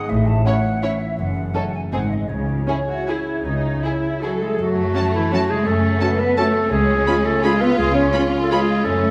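This classical excerpt is cut from a longer piece, a sweeping, dark passage in 3/4 with a rubato feel, its tempo moving between 149 and 186 BPM. It opens in C# minor, where a pure, close-miked small flute group carries a second line until 4.4 seconds while the concert harp rings out fingerpicked arpeggios. Lush violin sections share the melody and a more distant second line, and a smooth, even viola section fills in the accompaniment. Beneath them, a cello section with soft attacks and portamento joins a rich double bass section to anchor the bass. From 4.2 seconds a solo clarinet with a roomy, up-front presence takes a second line, and at 4.6 seconds the music turns to F# minor. The whole ensemble sits in a wet concert hall reverb.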